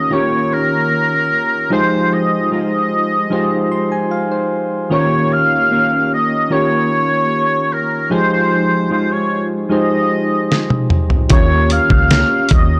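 A distant, softly vibrato-tinged oboe carries the melody through analog chorus in this hazy, laid-back bedroom-pop excerpt at 75 BPM, floating over a mellow, dark electric guitar with warbly pitch drift and round, gentle electric-piano-like synth keys that add a fill at 3.3 seconds. Late in the clip a dusty, gritty sampler-style drum kit with a thumpy kick and fat snare enters with a fill at 10.5 seconds, and a dark, foam-muted fingered bass follows at 11.3 seconds as the harmony sways between Eb7 and Fm7. The sound is dry and gritty, touched with light reverb.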